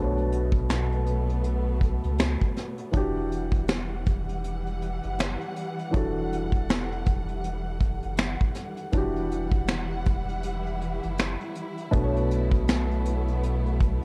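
Nostalgic and reflective, this lo-fi hip hop excerpt drifts at 80 BPM in E dorian with a swung 16th-note feel, moving from Bm9 to a long stretch of Em9 before returning to Bm9 at 11.9 seconds. A soft, felt-muted upright piano and a distant, lush bowed string section with vibrato and portamento carry the chords through a low-pass filter, over a round, sine-like sub bass that sits deep and up front. From 0.2 seconds, a vintage brush drum kit adds finger snaps, hi-hat, a tight kick and a medium-tuned snare with a smooth, rolled-off top, all within a dark, warm production and light small-room reverb.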